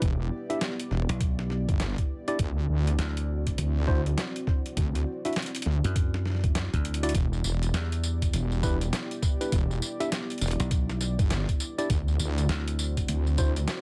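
A swung 16th-note groove at 101 BPM in 4/4 drives this playful, funky glitch hop excerpt in E minor: a thumpy, pitched-down electronic kick and a gritty, tape-warm boom bap kit of hi-hat, medium-tuned snare and tambourine sit in a small room, with a drum fill at 6.8 seconds. A heavy, detuned wobble bass with tube saturation and chorus sits up front, joined at 1.1 seconds by a bright, punchy, foam-muted thumbed slap bass. Above them, a worn, slightly out-of-tune tine electric piano plays stabs with 12-bit sampler grit, tape echo and sidechain pumping, while a deep, moody analog pad with chorus and sidechain pumping sustains Em7 and D9 chords.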